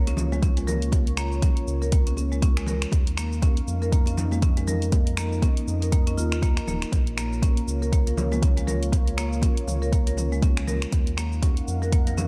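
An overdriven electronic kick sits up front in this earthy, hypnotic afro house excerpt, its deep, layered thump re-recorded in a small room and arriving at 0.4 s. Around it, a deep house kit of finger snaps, hi-hat, shaker and toms, with bright, band-limited congas played with hard hands in the background, moves at 120 BPM in 4/4 with a 58% swing on the sixteenths. A round analog bass blends sawtooth and sine with ring modulation, giving a fast-attacking, evolving low end thickened by tube saturation. A woody marimba with medium mallets on rosewood bars spins arpeggios, roughened by vintage 12-bit sampler grit and trailed by tape echo. Beneath it all, a moody, full-bodied analog pad of detuned sawtooth and triangle with a sub octave swells in slowly and holds chorused chords through Bbm, Eb5, Bbm and Ebm in Bb minor pentatonic. The bass, marimba and pad all pump with sidechain compression, and the whole track sits in a digital ambience.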